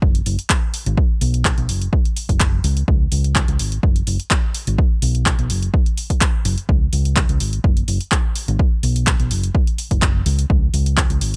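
Piano house with a euphoric, uplifting mood, this excerpt pairs a dry, overdriven electronic kick and a punchy analog drum machine's gritty handclaps and hi-hat with a dark, round hollow-body short-scale fingered electric bass that pumps against the sidechain, all sitting up front in a close, nearly reverb-free mix.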